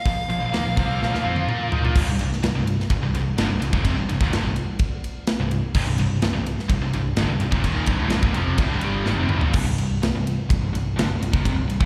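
Hard rock in C minor at 126 BPM, heavy and driving, cut from a longer piece and heard as a live gig through the venue's PA with recital hall reverb, opens with a brief nasal, parked-wah lead guitar line with overdrive and tape echo as an up-front, tight metal drum kit with bright cymbals and fills around 1.0 and 9.1 seconds drives a punchy picked bass, a background overdriven guitar riff with tremolo, a scooped high-gain guitar riff with distortion and slapback echo that stops at 9.5 seconds, and a very quiet double-tracked overdriven guitar riff entering at 5.8 seconds.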